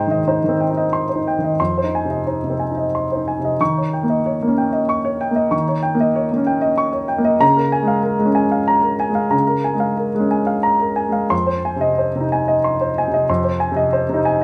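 Neoclassical minimalist piano in 3/4 with a rubato feel, this intimate and reflective passage, cut from a longer piece, features a single grand piano, up front, spanning F2 to Db6 with a natural tone and audible action noise. The harmony moves from Abmaj7 and Fm7 through Eb7 and Bbm7/Db before returning to Fm7 at 11.3 seconds, as the opening idea recurs at 3.6 seconds. A moderate large-studio reverb with a 1.2-second decay surrounds the instrument, giving the live room sound a gentle sense of space.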